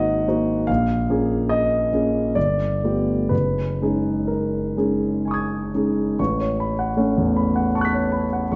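A warm concert grand piano, sitting up front with a deep bass, carries this short impressionist classical solo from start to finish, reaching from F#1 up to B6. The mood is serene and dreamy, moving in a flexible, rubato 3/4 at roughly 60-80 BPM in F# major, tuned to A4 = 441 Hz. Lush extended harmonies drift by, passing from G#9 and A#m7 through G9 to a settled F#69. At 6.2 seconds the music turns to a new section built on A69, adding a shift of colour before the fragment ends at 8.6 seconds, cut from a longer piece. A wet recital hall reverb surrounds the piano, and the sound has a soft, rounded top end.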